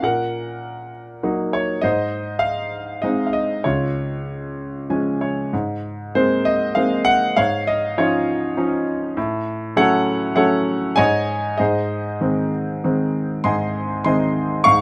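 A lilting three-beat metre moves with a free, rubato feel through this short passage from a longer classical work for solo piano. The mood is warm and relaxed, lyrical rather than showy. A single grand piano carries everything, its tone clear, natural and slightly worn, placed up front in a light reverb. The opening phrase settles through a chain of chords, and a brief piano fill at 4.6 seconds leads into a second section at 5.5 seconds. There the harmony grows more open, with added-tone colours and a suspended chord that resolves near the close at 11.6 seconds, the playing spanning from deep bass to the high treble.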